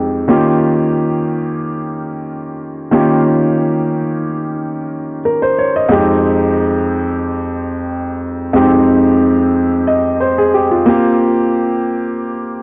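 In free time, a smooth, cinematic soul excerpt in F minor features a solo grand piano, warm and up front with a cassette-tape character, ranging from F2 to Eb5 as it moves through Eb7, Fm7 and C7sus4 over 12.6 seconds, set in a small room with light reverb on a home cassette recording tuned to A4 = 441 Hz.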